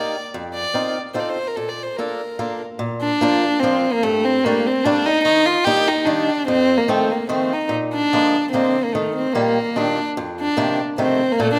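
A charming, whirling musette in 3/4 at 147 BPM, set in Bb major with a gentle swing on the eighth notes, this short passage is cut from a longer piece. A single bowed violin carries the melody from A3 to D5, its rich, intimate tone shaped by light vibrato, a soft attack and an airy sul tasto sound, placed close and up front. Beneath it, a picked swing-style acoustic guitar supplies the accompaniment from F2 to Bb4, bright with fresh strings and a slightly boxy body, also up front but sitting lower in level than the violin. The harmony circles through F7sus4, F7 and Bbmaj7 before moving through Gmadd9, Eb, Bb7 and back to F7sus4 and F7. Both instruments play throughout the 11.6 seconds, wrapped in a moderate recital hall reverb of 1.6 seconds.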